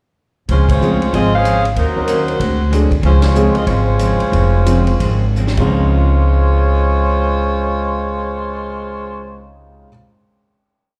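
Big band swing jazz in Db major, joyful and brassy, swinging its eighths at 160-189 BPM before the band slows from 3.0 s into a drum fill and a final hit at 5.7 s. An up-front saxophone section carries a motif-based melody in four-part block harmony with light vibrato and a smooth top, while a woody, bright upright bass plays a two-feel line and a vintage kit with dark cymbals and a punchy kick keeps a ride pattern until 5.6 s. An intimate grand piano with audible action noise comps in syncopated drop-2 voicings, and a dark, clean hollow-body archtop guitar strums four to the bar in the background; the horns, piano and guitar carry plate reverb and slapback echo within a live club sound.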